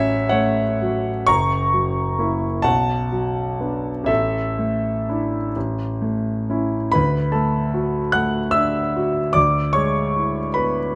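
Tender and dreamy, this brief fragment of a romantic classical nocturne for solo concert grand piano drifts in a slow, rubato 6/8 in D major, its intimate, up-front tone marked by deep bass, long sustain, audible action noise and light reverb as the harmony moves from F#m/A through F#7, Bm7 and Asus4 before settling on D at 6.9 seconds and shading toward E7/D.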